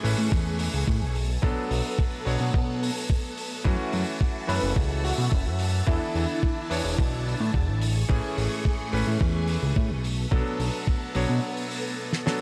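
A straight 4/4 groove at 108 BPM drives this sleek, cosmic nu-disco excerpt, with a compressed, thumpy electronic kick sitting up front from 0.3 s and a dry, damped 70s acoustic kit supplying hi-hat and a fat snare in a small room. Underneath, a thick sawtooth-and-square analog bass with tube saturation and a moving notch filter holds the low end until the break at 11.4 s, where a drum fill lands at 12.1 s. A bright, clangy vintage electric grand piano comps through Amaj7, Bm7, F#m7 and E7sus4 changes, pumping against the kick and trailed by analog delay. A lush string machine spreads slow-attack sawtooth chords with ensemble chorus and the same sidechain pumping. Between 4.5 and 6.7 s, a bold, dark, detuned unison lead with vibrato and delay carries a brief melody. The whole mix has a gritty, cassette-tape hardware character.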